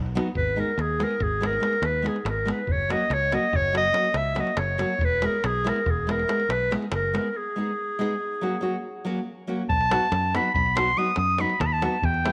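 A clear, classical-style solo clarinet leads this restless, bittersweet Balkan wedding-band piece in G# minor, cut from a longer work and set in 11/8 at 282 BPM counted in eighths, over a punchy, foam-muted fingered electric bass up front, a tight, close davul and a fingerpicked nylon-string guitar whose fresh strings carry audible finger squeak, inside a moderate echo-chamber reverb as the chords move from G#m through F# and E to a break at 7.4 s and a new section on B at 9.7 s.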